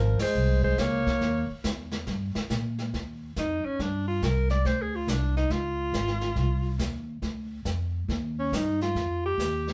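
Playful small-group swing and bop jazz at 140 BPM in Eb major, cut from a longer piece, opening on a band accent with a mellow, breathy tenor saxophone adding a scooped second line until 1.5 seconds beneath a clear, punchy alto saxophone whose forceful, vibrato-laden melody turns into a solo at 2.9 seconds, while a woody pizzicato upright bass sits up front and a brushed jazz kit with a boomy kick swings along in a live room with a 0.7-second reverb.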